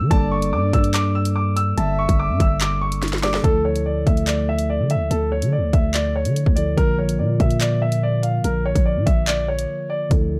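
Dark digital ambience frames this tense, cold drill piece at 144 BPM in a half-time feel in D harmonic minor, where an up-front concert grand piano with deep bass carries the melody over a mellow, low-pass-filtered tine electric piano, a growling, buzzy 808-style bass and a drill kit of hard-clipped kick, sharp snare, hi-hat and handclaps, while a breathy flute-like synth lead with chorus and tape echo adds a second line until 3.4 seconds, and the chords move from Gmadd9 to Dmadd9 to Bb, with a drum fill and a closing break.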